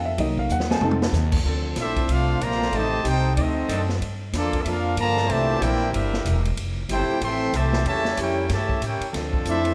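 Big band swing in D minor at 188 BPM, this short cut from a longer piece has a sultry, dramatic mood and a 4/4 swing feel. It opens with a brief upright piano solo, intimate and slightly detuned with audible action noise, while the woody, thumpy pizzicato upright bass sits up front beneath it. The drum kit joins at 0.2 seconds and plays a quick fill from 0.5 seconds, its punchy kick and medium-tuned snare alongside hi-hat, ride, crash and toms, and a clear trombone section slips in behind with sustained chords. At 1.8 seconds a bright trumpet section takes the melody up front with light vibrato and a soft attack, as a mellow, smooth-topped trombone section carries a second line. The harmony moves through rich jazz chords such as Cm7b5, D7b9, Gm11 and Fmaj9 before settling back on Dm7, all set in a moderate recital hall reverb.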